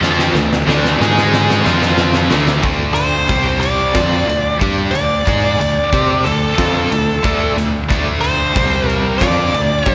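A drum fill from the big rock kit, with its punchy kick and fat snare up front, opens this driving, heavy hard rock excerpt in D minor at 92 BPM, over background riffs from a crunchy overdriven guitar with tremolo, a high-gain distorted guitar and a scooped, double-tracked high-gain guitar that drops out at 2.6 seconds, all three with slapback echo, while a growling fingered electric bass underpins the riffs and a biting lead guitar steps forward with its melody at 2.9 seconds, the whole mix bathed in concert-hall reverb for a big arena sound.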